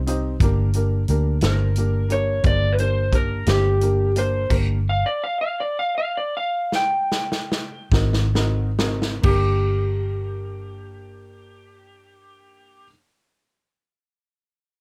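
A slow 12/8 blues pulse at 43-59 BPM on the dotted quarter, played straight, sets a smoky, mournful mood in G minor, cut from a longer piece. A round, foam-muted fingered electric bass sits up front with a punchy, amped low end, while a worn, woody upright piano with audible action noise and a slightly detuned, boxy tone accompanies quietly beneath. A natural country drum kit in a studio room adds punchy kick, medium-tuned snare, hi-hat and crash. An electric slide guitar carries the melody from 1.4 seconds, its dark, slightly broken-up voice standing forward in a light reverb. The band slows and then hits a stop at 4.5 seconds, a drum fill leads through an Ab7 back to G minor, and the drums drop out at 9.5 seconds as bass, piano and slide carry on.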